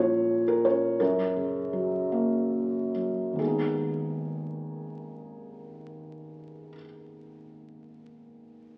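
In a rubato 6/8 with a dotted-quarter pulse between 42 and 60 BPM, this brief cut from a longer lyrical classical piece slows through its opening 3.4 seconds before settling into a second passage that runs to about 8.7 seconds. A solo felt-muted upright piano sits up front in G# dorian, moving from A#m to F# and arriving on G#m at 3.4 seconds, its thick felt giving a dark, intimate, mellow tone with audible action noise. The reflective, wistful playing is bathed in a wet recital-hall reverb and overlaid with the crackle of a very old 78 rpm record.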